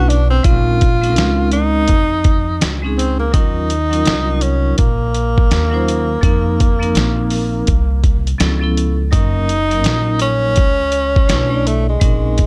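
The sax, vibraphone and upright bass open together at 0.0 seconds, with the sampler-style drums joining at 0.1 seconds, in this nocturnal, mellow jazz-hop excerpt at 83 BPM in Bb minor: a breathy tenor saxophone plays an up-front solo melody with subtone, vibrato and scooped notes over a ringing hard-mallet vibraphone with slow motor vibrato, a woody, growly pizzicato upright bass, and a gritty, compressed, pitched-down kit with a thumpy kick, all set in a dark, small-room production as the chords move from Bbm11 through Db7alt to Gb6 and a closing Bm11 at 11.3 seconds.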